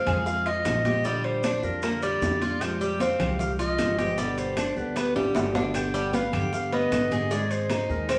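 A straight 4/4 pulse at 153 BPM drives this danceable, warm Cuban son and guajira excerpt, where a smooth, clear solo clarinet sings the melody up front over metallic, double-strung tres arpeggios and fingerpicked steel-string acoustic guitar, anchored by dark, thumpy gut-string upright bass and a background bed of high-tuned congas, ringing metal-shelled timbales, grainy maracas, very quiet woody claves and tight bongos entering at 0.3 seconds, with a drum fill at 5.2 seconds, all placed in a live room with wet studio reverb as the chords move from Fm through G to Ab.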